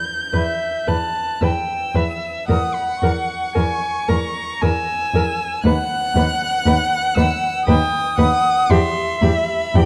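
A rubato 3/4 pulse of roughly 55-60 BPM carries this elegiac, yearning slow romantic movement for string quartet, cut from a longer piece and tuned to A4 = 442 Hz. The first violin opens alone at 0.0 s with a dark, high melody marked by soft attacks, vibrato and expressive portamento. By 0.3 s a rich, smooth second violin holds an even line up front, the viola adds warm, sliding accompaniment, and a clear, focused cello anchors the bass as the harmony moves from E minor through F#7/E and B/D# back home, all set in a moderate recital-hall reverb.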